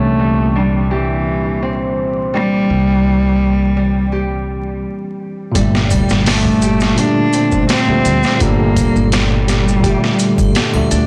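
A straight 84 BPM trip hop groove in G dorian sits on a growly, pizzicato upright bass with tube saturation, while a bell-like tine electric piano with harmonic tremolo and tape echo, ringing fingerpicked Celtic harp arpeggios with dub echo, and a veiled, distant muted string section hold a smoky, hypnotic Cadd9. A nasal, boxy bowed cello leads up front with light vibrato, roughened by 12-bit sampler grit and dub echo. After a brief stop at 4.8 s, the harmony moves to Gmadd9 as a pitched-down boom bap sampler kit with a thumpy kick and high-tuned snare arrives at 5.6 s, joined by background maracas and triangle, all in a blown-out, overdriven, low-passed small-room mix with vinyl crackle.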